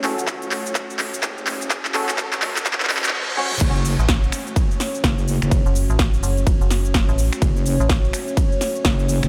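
This bouncy, swaggering bass house excerpt at 126 BPM in F# minor opens on a build-up, with a drum fill from the big-room dance kit, a very quiet riser and a filter sweep on a hollow, organ-like stab, all over a deep, moody pad of detuned chords and a wobbling, saturated bass. A punchy electronic kick arrives just after the start, and a reverse cymbal leads into the drop at 3.6 seconds, where the organ stabs fall away while the groove keeps its 16th-note swing. The kit stays up front, with a punchy snare, crisp hats, handclaps, finger snaps, cabasa, toms, and ride and crash cymbals, all tape-tinged and re-recorded in a large room. At 4.0 seconds a metallic, digital FM bass joins up front with tube saturation. The pad, stab and basses pump against the kick, and the whole mix is soaked in a dreamy cathedral reverb over a single F# minor chord.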